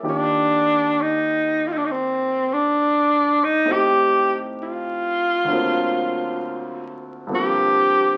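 A breathy tenor saxophone carries the melody up front, its clear tone colored by vibrato and scooped notes in an intimate, tender jazz ballad with a gentle swing. Beneath it, a concert grand piano accompanies from the start, polished and present with deep bass and audible action noise, moving through Ebmaj7, Am7b5, D7alt and Gm11. A large studio reverb surrounds the pair, and the crackle of a very old 78 rpm record gives this short fragment of a longer piece a time-worn patina.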